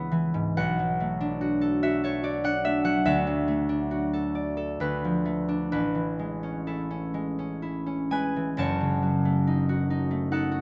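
A gently flowing 3/4 pulse with a rubato feel, moving between 62 and 74 BPM, carries this short classical passage for solo concert harp, cut from a longer piece. The mood is graceful and dreamy, settled in A major, with the harp playing alone throughout the full 10.6 seconds across a range from F#1 up to A5. Its fingerpicked strings sound acoustic and ringing, placed up front in a light reverb that adds a soft sense of space. The harmony drifts through rich colors such as C#m7, Bm9 and Dadd9 before the darker shade of Dm6 gives way to a glowing Amaj7. At 8.6 seconds a new section opens on F#m6, carrying the music on briefly before the passage ends.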